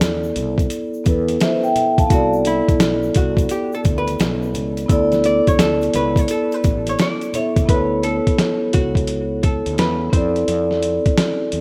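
A rough, lightly reverberant home-demo mix carries this cool, smooth jazz-hop cut, where muffled, pitched-down sampler drums with a thumpy kick sit up front beside mellow soft-mallet vibraphone chords (motor off) and a dark, round fretless bass, while faint bright congas and egg shaker drop out at 7.7 s and a clean, hollow-body archtop guitar enters at 2.1 s to carry the melody through analog delay.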